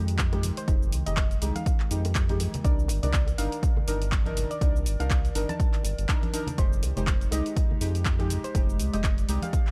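This deep house passage opens with a round, deep analog bass and a mellow chord stab, with the overdriven electronic kick arriving up front almost at once. The tempo sits at 122 BPM in 4/4 with a 57% swing on the 16ths, and the mood is late-night and hypnotic in F dorian, moving from Fm9 to Cm9 at 2.6 seconds and back to Fm9 at 6.6 seconds. A punchy, dry analog drum machine supplies handclaps, hi-hat and shaker with overdrive and small room ambience, while bright, close bongos and congas played with soft hands sit in the background. The stabs carry chorus, phaser and sidechain pumping, and a warbly, nostalgic tape-like pad holds sustained chords behind them, detuned and lo-fi with its own built-in reverb and pumping. From 0.6 seconds a soft, gentle pluck carries the melody, dressed in lush chorus and analog delay. The overall sound is dark and dry, with little room reverb, and this is a cut from a longer piece.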